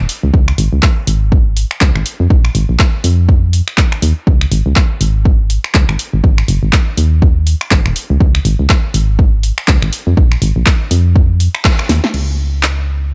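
A dry, up-front mix with little reverb carries this uplifting, euphoric piano house excerpt at 122 BPM in Db major, its sixteenths swung at 58%. A round, dark FM bass with a fast attack pumps against the sidechain beneath an overdriven electronic kick and a punchy analog drum machine of snare, handclaps, finger snaps, hi-hat and crash, both drum parts set in a small room ambience. The band hits an accent at 11.6 seconds before a drum fill at 11.9 seconds leads into a new section at 12.1 seconds.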